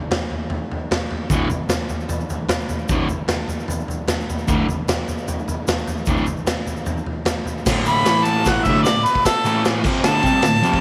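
Garage rock with a raw, swaggering mood, this short excerpt from a longer piece drives along at 151 BPM in a straight 4/4. A gritty, saturated drum kit opens the track, its boomy kick, medium-tuned snare, toms, ride and crash sounding up front in a bright stone room that pumps, with a rolled-off top end. At 1.3 seconds a dark, overdriven electric guitar joins with a double-tracked, picked riff in the low register, moving between D5 and A5 chords, while a grainy egg shaker sits in the background in a live room. At 7.9 seconds a bright harmonica takes an up-front pop-style solo, its overdriven tone carrying light vibrato and scooped notes high above the band. Light studio reverb frames the whole performance, which keeps its rough energy through to the cut at 10.8 seconds.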